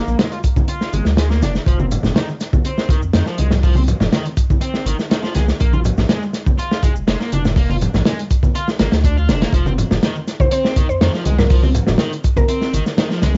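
This is an energetic, raw breakbeat excerpt in a straight 4/4. It is driven by a crunchy acoustic drum kit with a punchy kick, a medium-tuned snare and hi-hat, all saturated, gritty and up front with a rolled-off top. Bright, vintage congas and bongos played with soft hands sit alongside it, and a layered, overdriven electronic shaker stays very quiet beneath. A deep, thick sine sub bass holds the low end with sustained notes and tube saturation. Over this, a bright, double-tracked fuzz guitar plays a compressed, picked riff through tape echo and a low-pass filter, over Bb7 and F7(no3) chords. At 10.4 seconds a woody, round FM pluck with chorus and tape echo adds a brief mallet-like melody, and light reverb and a cassette home-recording sound give the whole piece a lo-fi, band-limited character.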